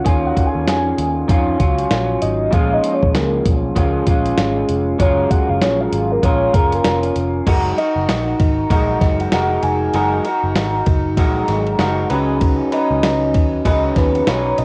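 Hazy and dreamy, this indie pop and bedroom pop fragment, cut from a longer piece, moves at 97 BPM in 4/4 with a lazy sixteenth-note swing in F# major. A soft, octave-layered synth lead carries the melody. Its round triangle-and-sine tone with a sub octave is soaked in lush chorus, tape echo and cassette tape, and it takes a solo over the first 7.5 seconds. An electric guitar through a small old amp sits up front, slightly broken-up and lo-fi, colored by analog chorus and vibrato. From 0.1 seconds, a dusty, sampler-style soul kit with a thumpy kick, medium-tuned snare, hi-hat, ride and crash arrives together with a dark, foam-muted, punchy bass. Light reverb and the feel of a home cassette recording wrap the harmony, which drifts from D#m9 through A#m7 and F#maj9 before settling on F#69 and C#9sus4.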